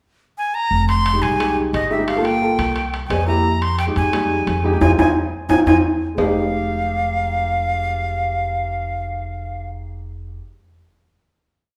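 A straight 4/4 Afro-Cuban jazz groove drives this short, fiery and sultry piece, with timbales playing a shell pattern and bell on high and low drums, their metal shells ringing with a vintage, band-limited tone. The flute opens alone at 0.4 seconds with a brief pickup. It then carries a motif-based melody of call phrases, breathy and bright with vibrato and tongued notes and a faintly reedy edge, sitting up front. Beneath it, a woody, up-front upright bass plays a plucked tumbao that anticipates the chords. A clear, slightly detuned upright piano adds syncopated chord stabs in rootless voicings over a minor-key progression. After a band accent from 4.8 seconds and a drum fill at 5.7 seconds, the group lands on a final chord at 6.2 seconds, the whole ensemble heard live in one room and bathed in a lush, large studio reverb.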